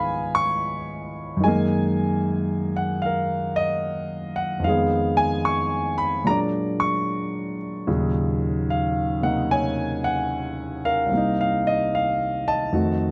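Late-night and swinging, this short cut from a longer solo jazz piece finds a dark, mellow grand piano alone at 74 BPM in 4/4, its smooth, vintage tone and long sustain sitting up front through close, detailed microphones and light reverb as it moves from Db9 and Gb69 through Fm7b5 and Bb7alt to Ebm7 and Cm7, spanning C2 to Db6 over 13.1 seconds.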